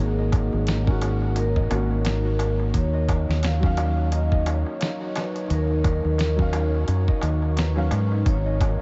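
A round, punchy fingered electric bass sits up front in this smoky, dark trip hop excerpt, joined at 0.3 seconds by a gritty, compressed sampler-style drum kit with a thumpy kick and fat snare, while a deep, clay-shelled darbuka plays quietly in the background from 0.2 seconds. A vibraphone with soft mallets carries an airy, ringing melody through dub echo, over a felt-muted upright piano with audible action noise, harmonic tremolo, 12-bit sampler grit and tape echo that drops out at 8.2 seconds. A detuned sawtooth pad with chorus and a fingerpicked concert harp playing arpeggios with dub echo fill the background over Ab9sus4 and Ebm7 chords, the whole mix sitting in light small-room reverb with vinyl crackle.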